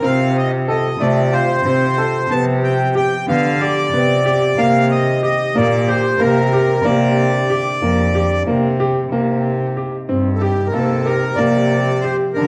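Hypnotic and urgent, this contemporary chamber piece in 7/8 moves at 185 BPM in C dorian, with an up-front accordion carrying the reedy, slowly beating melody while a clear concert grand piano spins short-sustained arpeggios and a bowed solo cello supplies a nasal, gut-string bass line. A brass ensemble holds sustained chords in the background with light vibrato, as harmonies shift from F7/C through G7/C, Eb and Bb6, then to Cm7 and Gm7/C when the music turns to a new section at 9.1 seconds. The dark production sits in a wet recital hall reverb, and the fragment is cut from a longer work.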